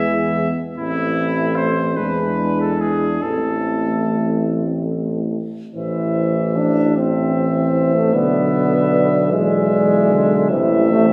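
A classical, hymn-like brass band excerpt in A minor, solemn and elegiac, moving at a slow, rubato 46-52 BPM in 6/8, with a clear, soft-attacked cornet carrying the melody over a mellow, tight French horn section playing the second line with light vibrato and a smooth top. Beneath them a warm trombone and a close-miked euphonium with vibrato sitting in the background fill out the accompaniment, while a vintage-toned tuba anchors the bass with light vibrato. The band is heard from further back in a wet scoring stage, its 1.7-second reverb lending the harmonies, which turn between Am and E7, a spacious, mournful glow across two statements of the same phrase, the second beginning at 5.8 seconds.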